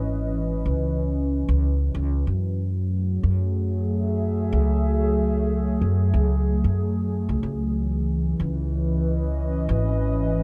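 A lightly swung 4/4 groove at 93 BPM, with a 56% swing on the sixteenths, carries this spacious, deep ambient dub excerpt in C# minor, drifting from C#m9 to F#m9 at 2.3 s and back to C#m9 at 7.4 s. A warbling, nostalgic, lo-fi pad of detuned sawtooth and triangle tones holds mellow sustained chords with a slow attack and long release, colored by chorus, phaser and its own reverb. Beneath it an up-front upright bass plays woody, warm pizzicato on steel strings throughout, and a lush hall reverb soaks the whole dreamy mix.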